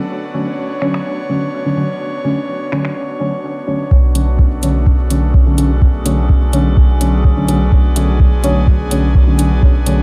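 A cavernous, lightly reverberant dub techno passage at 126 BPM in B dorian, meditative in mood, opens on a Bm7 chord with an airy, breathy pad pumping under sidechain and chorus, while a deep, nasal chord stab with phaser and dub echo joins at 0.3 seconds and a booming analog drum machine adds finger snaps and low-passed metallic hats. At 3.9 seconds a round, soft sub bass on B1 and a deep electronic kick, re-recorded in a large room, drop in to anchor the groove. An eerie, inharmonic FM drone with chorus and its own reverb enters faintly with a slow attack from 5.0 seconds on G#4.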